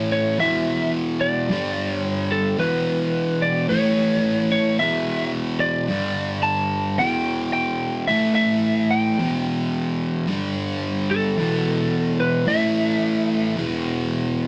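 A dark, overdriven, double-tracked electric guitar riff sits up front in this heavy, menacing rock excerpt at 109 BPM in E dorian, moving through chords on E, G and A while a compressed, slightly broken-up lead guitar picks a melody above it, both parts playing across the full 14.5 seconds in a rough rehearsal-room recording with a short, wet small-room reverb.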